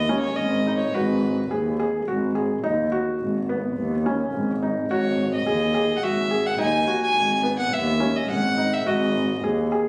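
Contemporary chamber music in 7/4 at 106 BPM, this pensive, hypnotic fragment in G# minor rests on a single G#7(no3) chord for its roughly 10 seconds. A reedy, gut-strung violin carries the bowed melody in period style, over a dark, woody bowed double bass with vibrato and felt-muted upright piano arpeggios that sound mellow and intimate, with short sustain and audible action noise. Captured on a phone in a recital hall with moderate reverb, added studio reverb and compression, the sound has a dulled top end.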